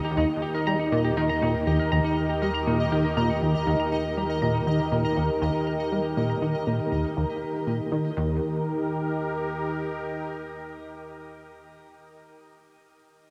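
A straight 4/4 pulse drives this expansive, luminous stretch of sequencer-driven ambient space music, where a punchy, funky plucky analog bass riff with lush chorus, tape echo and a filter sweep joins clean, bright semi-hollow guitar arpeggios in tape echo that fade out, a tempo-synced pulsing gated texture, and a warbling vintage analog drone that fades in the background, all under an airy, up-front sweeping resonant pad of detuned sustained chords that carries on alone after 9.6 s into a huge, wet reverb tail.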